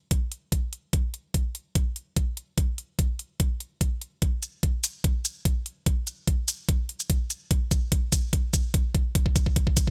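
Heavy wobble dubstep at 146 BPM in a half-time 4/4 feel, this menacing build-up cut from a longer piece sets a knocking, layered, overdriven electronic kick drum up front beside an equally distorted, forward electronic hi-hat and shaker, both starting at 0.1 seconds in a dry mix, with a drum fill running from 4.2 seconds to the end at 9.9 seconds.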